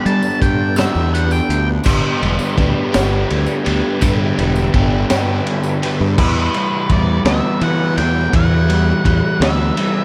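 Opening on a distorted, picked octave-fuzz lead guitar solo over a double-tracked crunchy guitar riff with phaser and tape echo and a very quiet, clean tonewheel organ turning on a slow rotary speaker, this mysterious, hypnotic psychedelic rock passage at 56 BPM in 6/8 moves from G to Emadd9 at 6.2 s as the echoing lead returns, driven by a round, fuzzy fingered electric bass up front, a gritty breakbeat drum kit with dark cymbals and a high-tuned snare, and a jingly tambourine in the background until 5.8 s, set in an echo-heavy mix with small room ambience.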